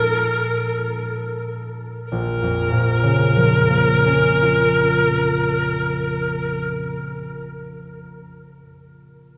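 A wistful, mysterious impressionist duo in Bb minor opens with a rich, expressive bowed viola singing the melody with vibrato, soft attacks and portamento over a mellow, ringing thumb-plucked concert harp, moving in a rubato 3/4 at around 43-49 BPM and slowing through its first 2.1 seconds as a Bbm7 gives way to Bbm, all bathed in a cavernous cathedral reverb, until the viola falls silent at 6.6 seconds and the harp rings on alone to 7.3 seconds in this fragment cut from a longer piece.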